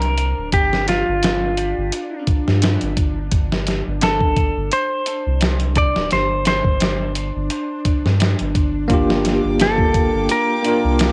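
A home cassette recording with light reverb gives this brooding, hypnotic trip hop excerpt at 86 BPM a dusty, lo-fi sheen, with a compressed sampler-style drum kit up front, its kick thumpy and its snare medium-tuned, over a deep, round dub sub bass with tube saturation. A bright, clean semi-hollow electric guitar carries the picked melody through tape echo and 12-bit sampler grit, while a tense, string-like bowed drone hangs in the background over a D7sus4 chord. At 8.9 seconds, as the harmony shifts to Gm7, a bell-like tine electric piano with tremolo joins as accompaniment, and a reedy chamber violin section with light vibrato adds sustained chords.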